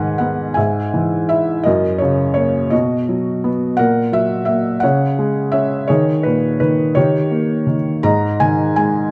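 A felt-muted upright piano, mellow and intimate with a thin felt softness and placed up front, plays alone through this reflective, melancholic classical excerpt in G# minor, moving at a rubato 56 BPM in 6/8 through chords from G#m and E/G# to F#, B and a D#sus4 that settles on D# before closing on G#5 near 8.1 seconds, all set in a dark production with a moderate scoring-stage reverb.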